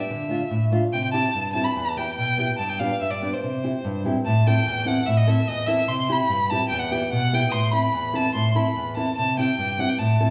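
A wet, roomy studio reverb surrounds this short cut from a longer klezmer piece, played live by a duo in one room in a bittersweet yet festive mood, in 2/4 with a straight feel and gradually speeding up throughout. Up front, a single bowed violin carries the melody with a rich, focused tone and vibrato, while a small, dark nylon-string guitar fingerpicks the accompaniment with audible finger squeak. A new section begins at 4.2 s, and both players continue together to the end at 10.3 s.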